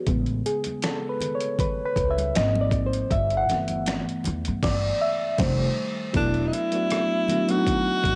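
A reedy electric piano opens this excerpt of soulful neo-soul R&B at 79 BPM in 4/4, with a light sixteenth-note swing. Its clean, up-front chords are colored by phaser and cassette tape, and it takes a solo turn through the first section. Almost at once, a woody, growly pizzicato upright bass joins alongside a gritty, sampler-style drum kit. The kit is overdriven and taped, with a thumpy kick, fat snare, hi-hat, rim click, finger snaps and crash cymbal, while hard-handed congas sit close and dry in the background. The harmony moves from Amaj9 through G#69, G69 and F9 before settling on E9sus4. From 4.6 seconds the drums are muted as the band hits accents, and at 6.2 seconds a breathy tenor saxophone steps forward with jazz-style vibrato and scooped notes, all under a moderate spring reverb and the warm haze of a home cassette recording.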